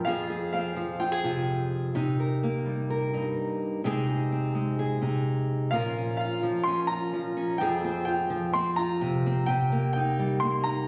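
Captured on a phone in a moderate recital hall with added club reverb and compression, this yearning, stirring folk passage in F minor moves at 127 BPM, cut from a longer piece. A fingerpicked steel-string acoustic guitar sits up front and carries the accompaniment throughout, cycling through Fmadd9, Cm7, Ab/C and Bbm. Above it, a bright, woody, slightly detuned upright piano with audible action noise states the high melody until 1.7 seconds, then returns at 5.7 seconds as the second section builds to the close.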